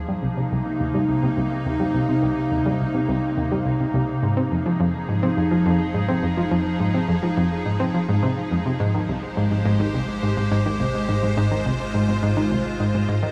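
An analog pluck riff with a fast attack and a detuned sawtooth bite sits up front from the start, its chorus and analog delay trailing each note, while a bright, morphing wavetable pad holds sustained chords alongside it with slow attack and ensemble chorus. This is hypnotic, cosmic, sequencer-driven space music in C minor at 105 BPM in a straight 4/4, moving from Cm7 to Fm7 at 4.2 seconds and Abmaj7 at 8.8 seconds. A deep, very quiet round analog bass anchors the low end throughout this 13.3-second passage cut from a longer piece, all set in a wet, huge ambient reverb.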